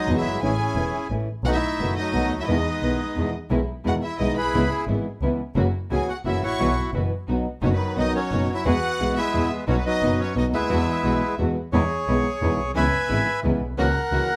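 In a rubato 3/4 at 175 BPM, this nostalgic, playful tango excerpt in E major sets a reedy bandoneon melody, touched with plate reverb, over a dark, thumb-plucked nylon-string guitar and a focused, bowed double bass played by one player up front. A smooth symphonic violin section with vibrato carries a second line until 11.4 seconds, while a muted, veiled string section adds background stabs from 3.5 seconds. The harmony moves through chords such as B7, Emaj7, C#m7 and F#7, closing on F#7/C# within a light overall reverb.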